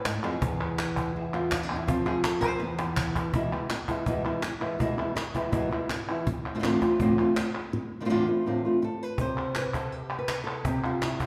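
A straight 4/4 pulse drives this fiery, mournful flamenco passage, cut from a longer piece, with an up-front, fingerpicked flamenco guitar carrying the melody across a broad range, its finger squeak audible, and taking a solo from the start until 3.3 seconds as a cajon fill arrives at 2.8 seconds. Beneath it, the woody cajon with faint snares and soft hands sits alongside crisp, vintage, band-limited palmas, and a wet recital-hall reverb gives the sound a church-like resonance. The harmony circles E with touches of F5 and Dm7/E before the chords fall away at 9.2 seconds.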